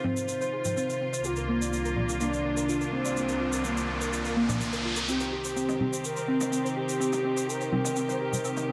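Dark, driving melodic techno excerpt in which a smooth, portamento sawtooth lead with dub echo sings over biting bowed strings, a woody wave-folded pluck arpeggio under a filter sweep, muted detuned dub chord stabs with phaser, a resonant analog drone and a grainy tube shaker, while a riser spans 2.5 to 5.1 seconds before overdriven electronic toms enter at 5.7 seconds for the build-up.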